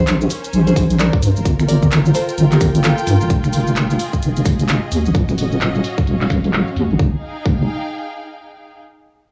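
UK garage in a soulful, moody two-step swing, where a fingerpicked nylon-string guitar with analog delay carries the melody until 3.1 s over a deep, dark wobble bass with chorus and lush, vibrato-rich bowed strings that pump with sidechain, while a tape-warm garage kit of filtered finger snaps, handclaps, hi-hat and shaker is joined by a tight, up-front electronic kick that enters at 0.8 s and briefly drops out at 2.8 s, all framed by a gritty cassette-tinged sound with studio reverb in this short cut from a longer piece.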